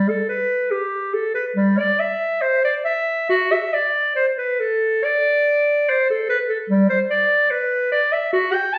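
A clear, punchy solo clarinet opens this serene, dance-like baroque-style classical fantasia, moving freely in rubato 4/4 at about 67-74 BPM across a range from G3 to A5, heard from further back in a wet stone room whose one-second reverb lends a distant, roomy glow to this 8.8-second fragment of a longer piece.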